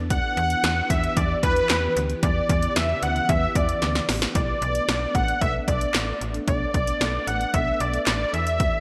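A bold, detuned unison lead carries the melody up front in this melancholic, nocturnal synth-pop excerpt, its thick sawtooth tone bright and wave-folded, with vibrato and a trailing delay. Beneath it, a punchy analog drum machine drives a straight 4/4 at 113 BPM with kick, snare, hi-hat and handclaps, the whole kit wrapped in gated reverb, and a short drum fill arrives at 3.8 seconds. A slap-like FM bass adds snappy, metallic attacks that decay, while a soft string machine holds silky, dark sustained chords through an ensemble chorus. The harmony in B minor moves from Em7 to Bm7 at 4.4 seconds. A moderate plate reverb and bright digital production give the short fragment its 1980s sheen.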